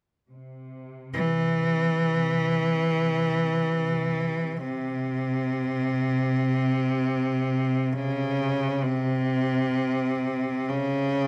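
Unfolding in free time, this short excerpt of a solemn, mournful Caucasian lament in C major sets a lone bowed cello up front, bright and biting with intense vibrato, singing a melody between C3 and E3 from 1.1 seconds over a distant, lush cello section that holds a focused drone on C3 in the background from 0.3 seconds, all caught by close, detailed microphones with light reverb.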